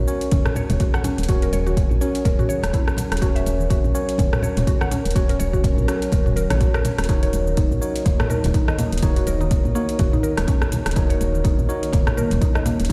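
A swung 124 BPM groove of deep, up-front electronic kick, an afro-pop kit with metallic hats, rim clicks, shaker and toms, and low-tuned congas in the background drives this hypnotic afro house excerpt, where a dark, woody FM bass and a round, mellow mallet-like synth pluck with chorus and tape echo pump alongside bright tine electric piano stabs and an ethereal, airy pad with phaser and ensemble chorus, all moving from Gb/Eb to Ebm7 at 7.1 s in a stone room reverb.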